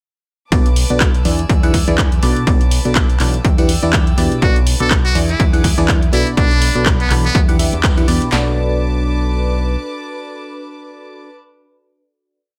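A soulful, bittersweet piano house piece opens straight into the drop, with a punchy analog drum machine up front laying down an overdriven four-on-the-floor kick, snare and clap, layered with a house kit's tape-softened programmed hats and backbeat claps. A biting FM electric piano plays a percussive, dotted-rhythm riff in close voicings through a phaser, while a growling fingered electric bass, overdriven and tube-saturated, follows a dotted rhythm beneath it. Distant chamber strings float on soft-attack sustained chords, and the strings, piano and bass all pump against the kick. At 4.4 seconds a brilliant, buzzy trumpet with a metal mute steps in for short jazz-style phrases with vibrato and scooped notes, trailed by tape echo. After a band accent, the drums fall away and the piece settles at 8.3 seconds into a final chord, with strings and electric piano ringing on in a dry, close-sounding mix.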